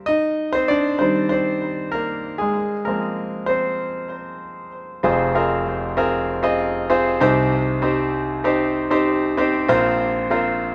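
This pop excerpt at 97 BPM in a straight 4/4 carries a dramatic, bittersweet mood, tuned slightly low with A4 at 436 Hz. A concert grand piano plays alone from 0.0 to 10.7 seconds, ranging from F1 up to Eb5, with a clear, polished tone, deep bass and short sustain, placed up front and touched by digital delay. The harmony moves from Cm to Fm, returns to Cm, and closes on Bbsus2, with a new section beginning at 5.0 seconds. The recording captures a live performance in a single room, wrapped in a generous studio reverb with a decay of 0.8 seconds. It is a short cut from a longer piece.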